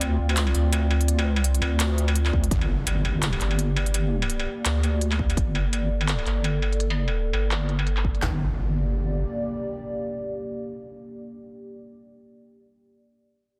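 This tense, spacious half-time drum and bass excerpt opens on a drop, with a deep, wobbling bass sitting up front beneath a moody, detuned analog pad that pumps against the beat, while an industrial kit of handclaps, muffled hi-hats, struck metal and tambourine rattles through a large, tape-tinged room. Heavier hits of kick, clanging snare and toms punch in briefly at 2.3 seconds and again later, as an electronic impact lands at 2.5 seconds and a filter sweep works across the bass as the chords move from Dm7 to Gm. The drums fall away at 8.2 seconds, and the bass lingers a little longer before the impact and the dark, phased pad ring out in light digital ambience under a dense, heavily limited master.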